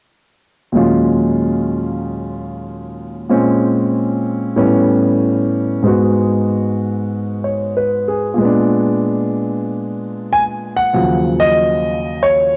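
A solo concert grand piano carries this short, late-night jazz fragment, its sound deep in the bass, natural and up front, with the soft wear of cassette tape on its tone. The tune sits in Eb minor at 94 BPM in 4/4, with a lilting swing on the eighth notes that keeps the moody atmosphere moving. The piano ranges from Eb2 up to Ab5, opening on an Ebm11 at 0.7 seconds and passing through Bbm9, A9, Abm7 and a tense Bb7b9. A new passage begins at 10.9 seconds, settling onto Ebm9 before the fragment breaks off at 12.6 seconds. A lush hall reverb surrounds the instrument, and the home cassette recording lends the whole piece an intimate, after-hours character.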